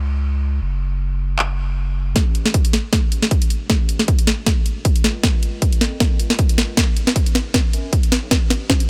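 A digital ambience surrounds this short, bright, euphoric future bass excerpt, taken from a longer piece in A major at 156 BPM with a half-time feel and a light 55% swing on the sixteenths, tuned to A4 = 439 Hz. A deep, thick, sine-based sub bass opens the recording alone. It is saturated, with a fast attack and long sustain, shaped by sidechain pumping and a high-pass filter. At 1.4 seconds a tape-warm trap drum kit arrives up front, bringing handclaps, bright hi-hats and a sharp snare. At 2.2 seconds a punchy, layered, overdriven electronic kick drops in. From there the track becomes a build-up carried by a drum fill that runs to the end of the clip.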